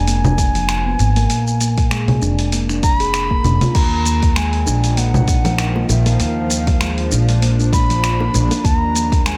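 Mystical and earthy, this organic downtempo piece, cut from a longer work, moves with a lightly swung 4/4 groove. A reedy bansuri carries the melody with vibrato and tongued notes, its bamboo tone pure and trailed by delay, while a handpan struck with fingertips rings out meditative arpeggios in a boxy small room. Beneath them a woody, dark pizzicato upright bass pumps against a deep, tape-warm electronic kick, joined by a gritty, compressed sampler-style kit of congas, finger snaps, hi-hat, shaker and crash cymbal re-recorded in a large room. At 4.5 seconds a tense, string-like drone with detuned sawtooth layers, ring modulation and its own reverb swells in slowly and pumps with the groove, and soft-handed bongos and congas add a very quiet ringing layer from 4.7 seconds. The harmony moves from Bb7b9 to Ebsus2 and touches a rootless B6 near the end, all set in small room ambience.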